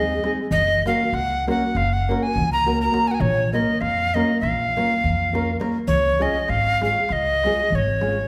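Driving along in 9/8 at 201 BPM counted in eighths, this wild, virtuosic Balkan wedding-band fragment in Db major moves from Ab and Gb through Bbm to Db within about 8.3 seconds. A breathy tenor recorder carries the melody up front, its woody, tongued tone full of chiff and expressive vibrato. Beneath it, a fingerpicked nylon-string guitar with fresh strings and finger squeak and a thumpy pizzicato upright bass sit in the wet reverb of a recital hall, while a small, soft-handed clay darbuka stays close and dry in the background.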